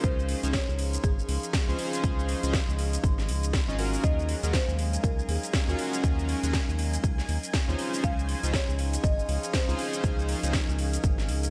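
Hypnotic and smooth, this deep house excerpt moves at 120 BPM in 4/4 with a swung sixteenth-note feel, tuned slightly flat to A4 = 436 Hz, and drifts from Dbmaj9 to Ebm11 and back to Dbmaj9. A punchy, tape-warm electronic kick sits up front beside a house drum kit of cracking snare, metallic hi-hats and shaker, both re-recorded in a small room, while a round, deep, dark analog bass anchors the low end with sidechain pumping. A glossy, retro chorused polysynth plays stabs that pump against the kick and trail off through delay, and a woody marimba with medium mallets carries a melody in the background with its own delay until about 10.0 s. Beneath them, a warbling, nostalgic lo-fi pad holds sustained chords with chorus, built-in reverb and pumping, joined by an airy, breathy pad that adds a bright, chorused haze. At 4.0 s a shimmering vintage string machine enters high in the background with ensemble chorus, and the whole mix sits in light reverb.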